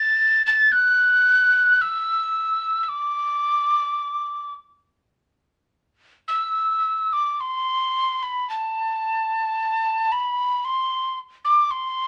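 Rubato and slow at roughly 50-57 BPM in 4/4, this mournful Celtic folk fragment, cut from a longer piece, features a lone wooden whistle in A dorian. It is breathy and mellow with a crisp, chiffy attack, vibrato and an unsteady quality, placed close and up front within moderate studio reverb. It moves through two phrases, the second beginning at 6.3 seconds, ranging from A5 to A6 in a longing, plaintive air.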